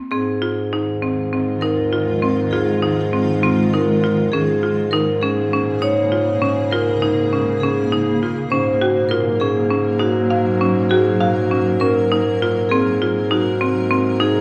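A buzzing marimba struck with hard mallets sits up front, spinning woody, dry arpeggios through a shimmering, restless contemporary instrumental in 7/8 with a straight feel, cut from a longer piece. A metallic, ringing vibraphone carries a second line, while a warm bass clarinet holds the bass and a cloudy, blurred granular pad fades in at 1.0 s with evolving sustained chords and its own built-in reverb. The harmony moves from Fm7 through Bbm7 and Gbmaj7 to Ab7, all set in a moderate recital hall ambience.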